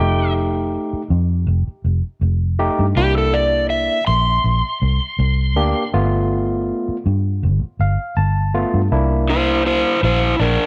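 An up-front, overdriven slide guitar carries the melody in this rollicking, swaggering soul blues excerpt at 81 BPM in C mixolydian, its dark tone taking a solo from 8.9 seconds over a C9 chord. Beneath it, a barky, gritty tine electric piano pushed through a combo amp accompanies through the F9, C9 and G9 changes and adds a fill at 7.4 seconds, while a foam-muted, round fingered bass anchors the low end. A moderate echo chamber reverb gives the straight-eighth groove a roomy glow.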